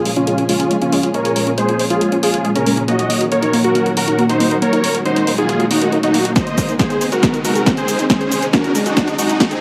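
Soaring and emotional, this uplifting trance build-up is cut from a longer piece and runs in a straight 4/4 through a rising wash of energy. A huge, thick detuned supersaw carries the melody up front, pumping against the sidechain as a filter sweeps across it, with tape echo trailing its lines. Beneath it, a lush, bright unison pad holds sustained chords with a slow attack and chorus, moving from Bbm7 to Ebm7 and on to Ab. A decaying, wave-folded pluck spins arpeggios in the background, its cassette-tape grit and tape echo also caught in a filter sweep. A punchy analog drum machine keeps hi-hat, shaker and overdriven snare going, a riser creeps in from 2.4 seconds, and an overdriven electronic kick joins at 6.4 seconds as a drum fill drives the build-up onward. Light reverb and digital ambience frame a dark, warm production throughout.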